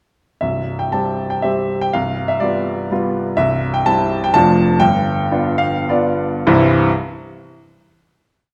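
Dotted rhythms drive this brief, proud and graceful romantic dance in 3/4 and C major, moving with rubato at 95-131 BPM. A clear, natural baby grand piano plays alone from 0.4 to 6.9 seconds, set up front with a single-line melody over octave bass and chords that pass through G7 and Dm/F before settling on a final C chord at 6.5 seconds. A wet recital hall reverb and a dark production surround the piano.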